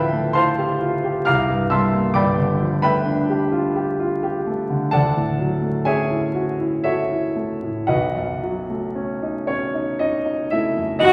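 A concert grand piano opens this wistful, hazy impressionist duo on its own, its warm, open tone reaching down into deep bass and up into a high register, with a short sustain. The piano drifts in a rubato 3/4 through lush extended harmonies, moving from Dm11 to C9sus4 and G9, then settling on Dmaj9 and B9. A recital hall reverb lends the sound a soft, airy bloom, and a faint vinyl crackle adds to the dreamy, aged atmosphere. At 11.0 seconds a solo bowed violin appears up front with a single clear, focused F#4 touched with vibrato, yet still carrying a slightly distant quality. The passage is cut from a longer piece and breaks off just as the violin arrives.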